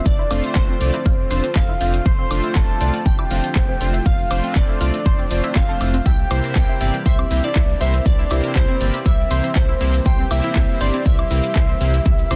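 This hopeful, expansive progressive house excerpt opens with a soft, octave-layered synth lead carrying the melody over a lush supersaw pad, whose sustained chords sit in the background with a phaser and sidechain pumping. Within the first moments, a punchy electronic kick drum arrives up front with studio reverb, joined by a pop drum kit of handclaps, hi-hat and woodblock, with its hats, percussion and cymbals pumping against the kick, plus a grainy cabasa tucked close in the background. A round, deep analog bass anchors the low end with a dark, detuned tone and its own sidechain pumping, while a very quiet, crystalline wavetable pluck traces a second line in the same register as the lead. A tight, driving sequenced synth runs arpeggios behind everything with chorus, phaser and delay, and a glossy, retro polysynth, entering at 0.3 seconds, adds chorused stabs with delay. The lead itself is full and gently vibratoed, treated with chorus and delay, and the whole piece comes through a dense, heavily limited modern master in a digital ambience.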